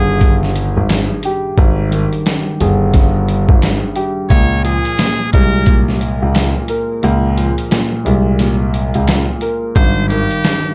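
A swung 88 BPM boom-bap groove in 4/4 from a gritty, compressed sampler-style drum kit with a thumpy kick, which drops out from 7.0 to 9.8 seconds, carries this soulful, nostalgic hip-hop fragment in Ab major. A buzzy, jazz-style muted trumpet with light vibrato and tape echo plays the melody over worn, cassette-tinged baby grand chords. A dark concert grand holds the bass with audible action noise, while a very quiet finger snap enters at 0.9 seconds, all set in light reverb.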